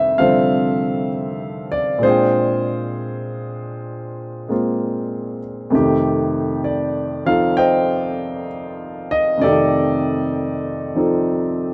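Playful and swinging, this short passage of solo jazz is cut from a longer piece and sits in a relaxed, unhurried 4/4 with a lilting swung eighth-note feel. A warm grand piano carries the whole performance on its own from 0.0 to 11.7 s, sitting up front and spanning from F2 up to G5. The harmony moves from F13 to Bb13 at 2.0 s before settling back on F13 at 5.7 s. Light reverb surrounds the piano, and the overall production leans dark and warm.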